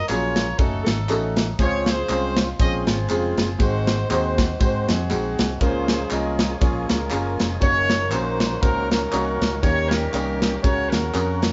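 A mellow, distant horn section opens this hopeful, reverent slice of uptempo gospel in Db major, carrying a tight melody over a swung 119 BPM groove in 4/4. A clear, boxy grand piano, a punchy fingered electric bass and a polished acoustic drum kit with a punchy kick and up-front snare and ride join at once, with group handclaps, tambourine and maracas sitting in the background. At 5.6 s a thick, gritty tonewheel organ slips in very quietly with sustained chords through a slow rotary speaker, and the band sounds live in one room with moderate reverb.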